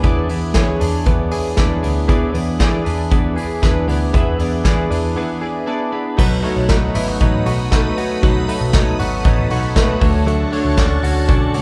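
Soft brushed drums sit up front in this restless, wistful jangly indie pop excerpt at 117 BPM, over a dark, foam-muted picked bass, a twangy clean electric guitar playing accompaniment, a scooped clean guitar playing arpeggios in the background (both with spring reverb), and round analog keys with chorus. The chords move from E7 to B7 after a break at 5.2 seconds, and a swirling, phased string machine enters quietly at 6.7 seconds, with the band playing together in a large room with moderate reverb.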